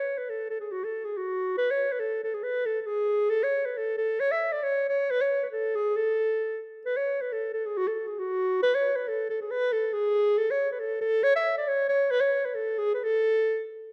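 Festive and virtuosic, this Balkan folk excerpt features a solo clarinet at a brisk 136 BPM in 2/4, with a lightly swung sixteenth-note feel. The key is A major, and the tuning sits slightly high at A4 = 443 Hz. The clarinet plays alone from start to finish over about 13.7 seconds, ranging from F#4 to E5 with a mellow tone, a smooth top end and a classical style. One passage is stated and then heard again beginning at 6.8 seconds. Close, detailed miking keeps the clarinet up front, while a moderate recital-hall reverb with a 1.6-second decay adds a sense of space around it.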